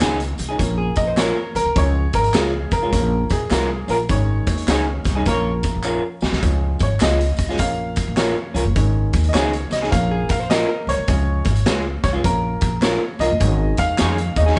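A clear, worn grand piano leads this danceable, uptempo 1960s-style soul cut at 103 BPM with a swung feel, over slightly broken-up, lo-fi electric guitar stabs, woody pizzicato upright bass, a vintage drum kit with a tight kick and medium-tuned snare, very quiet handclaps and tambourine, brief dark riffs from a hollow-body jazz guitar, and a distant, roomy horn section with light vibrato entering at 4.7 seconds, the band hitting an accent at 4.1 seconds and the drums playing a fill at 5.8 seconds in a live room with moderate reverb.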